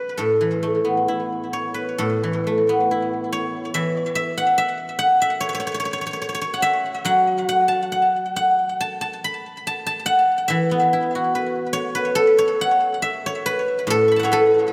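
In a free, rubato 2/4 pulse hovering around 64-74 BPM, this serene, flowing cut from a longer traditional Chinese piece features a solo guzheng in the A gong mode, whose silvery, ringing fingerpicked tones span from A2 to C#6, sit up front with delay, and shift into a new section at 2.0 s, all bathed in a dreamy church-like reverb with a 2.8-second decay.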